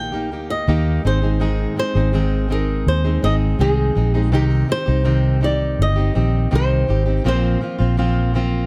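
Set in a small room, this carefree, easy-going acoustic pop fragment pairs a bright flamenco guitar melody with a full-bodied fingerpicked jumbo steel-string guitar and a dark, round, foam-muted vintage electric bass, the two latter parts sitting up front as the chords move from Eb through Ab and Cm to a Bbsus2.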